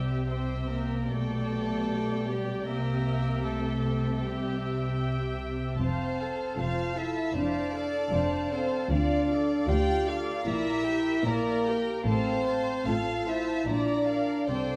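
Classical slow romantic orchestral movement at 76 BPM in F major, tender and warm with a rubato feel, where a pure, floating sul tasto violin melody sits over a second violin line with light vibrato, dark and intimate violas, a tight, smooth-topped French horn section holding sustained chords, woody cellos in the background and close, soft-attack double basses, the ensemble set in a wet scoring-stage reverb.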